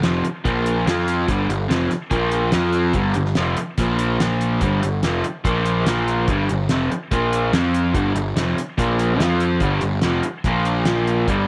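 Swaggering and gritty, this short excerpt of classic rock pushes a raw, overdriven, double-tracked garage guitar riff up front over power chords, backed by a fuzzy, picked electric bass and a dry, cloth-damped drum kit with a fat snare, tight kick and rolled-off top, all in a small room with light reverb.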